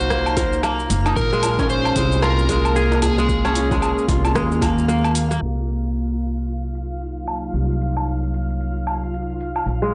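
A swung sixteenth-note groove from an overdriven deep house kit of hi-hat, rim click, shaker and woodblock, a deep electronic kick and a very quiet, rattling djembe drives this earthy, hypnotic organic downtempo fragment, where a thumpy, woody pizzicato upright bass sits up front beside a crisp, ringing fingerpicked kora, an overdriven slide guitar sings a brief melody with tape echo until 4.0 seconds, the kick and djembe drop out at 4.7 seconds, a dark, warbling tape-like pad pumps beneath and takes a filter sweep from 5.4 seconds, and a sparkling granular shimmer twinkles far in the background, all heard through a blown-out, overdriven mix in a moderate echo-chamber ambience.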